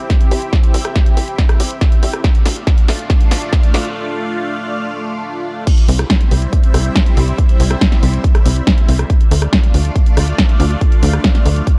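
Soaring and driving, this uplifting trance excerpt at 140 BPM, cut from a longer piece, moves from a build-up with a drum fill and a brief break at 4.0 seconds into a drop at 5.7 seconds over C and Dm chords, as a punchy, up-front layered electronic kick and a tape-warm analog drum machine with a punchy snare, hi-hat, rim click and crash cymbal drive beneath a tight, plucky sawtooth and square-wave sequencer bass with ring modulation, while a lush, thick, detuned unison pad with chorus, phaser and sidechain pumping sustains bright chords on top, all in a dark, warm production with little reverb.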